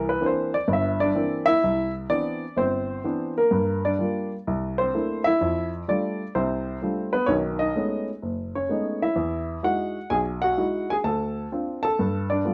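Swinging eighth notes at 128 BPM in 4/4 carry this relaxed, warm solo jazz piano excerpt, where an intimate, up-front baby grand with short sustain and audible action noise ranges from F#1 to A5 over rich extended harmony such as C9, F69, B13 and Emaj9, all colored by light reverb and the worn, warbly pitch drift of old cassette tape.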